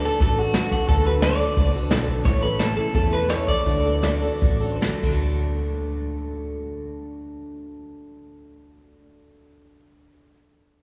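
Honky-tonk and classic country at an easygoing, heartfelt 140-176 BPM in D major, this excerpt opens with a twangy, slightly broken-up electric guitar melody up front, with brushed drums that have a punchy kick and dark, rolled-off top, a round, foam-muted fingered bass, and a bright dreadnought acoustic guitar whose fresh strings show finger squeak; the tempo slows from 2.3 s, the lead guitar stops at 4.8 s and the drums at 5.1 s, and the acoustic and bass carry on through a vast cathedral reverb.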